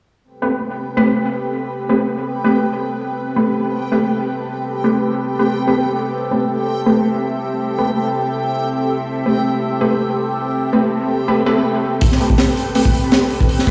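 Raw and atmospheric, this drum and bass and jungle excerpt opens on bold, punchy orchestra-hit-like synth stabs that trail into dub echo, joined by a lush, thick unison pad holding a sustained Am9 chord through chorus, phaser and a filter sweep, and then a dreamy reversed texture shimmering above them, all under a wet hall reverb. A very quiet electronic swell enters at 11.6 seconds, and at 12.0 seconds a crunchy, gritty breakbeat drum kit drops in up front, with a punchy kick and a high-tuned snare.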